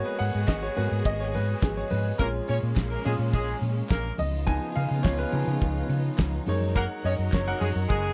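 Glamorous and danceable, this short disco excerpt moves at 105 BPM in a straight 4/4, set in G# dorian with chords shifting from G#m7 through A#m7 and C#9 to F#6. A clear, slightly worn grand piano carries the lead from the first moment, sitting up front over lush bowed strings that hold sustained chords with a smooth top and vibrato. At 0.2 s a round, punchy hollow-body electric bass with a dark, amped tone joins the damped 1970s drum kit, whose fat snare, tight kick and hi-hat sound polished and airy. Congas with a thick skin and soft hands add very quiet percussion alongside crisp group handclaps, and from 2.2 s a pop-style horn section punctuates the groove with clear stabs that carry vibrato and a roomy, distant character. The whole track is a dry, close 1970s-style studio recording with little reverb.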